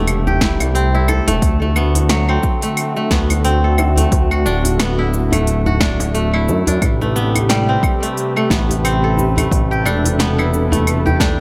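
A swung 16th-note groove at 89 BPM in 4/4 drives this earthy, meditative organic downtempo excerpt in A dorian, where a punchy electronic kick arriving at 0.4 s and a deep house kit of claves, smooth hats, shaker and a punchy snare are joined by a very quiet, soft-handed djembe, while a bright, crisp, ringing fingerpicked kora plays up-front arpeggios through delay, a smooth sawtooth-and-square synth bass glides with portamento and sidechain pumping, and a detuned, warbling vintage analog pad holds lush chorused chords that also pump, all moving from Am9 to D7 and back to Am9 at 6.8 s in a light reverb.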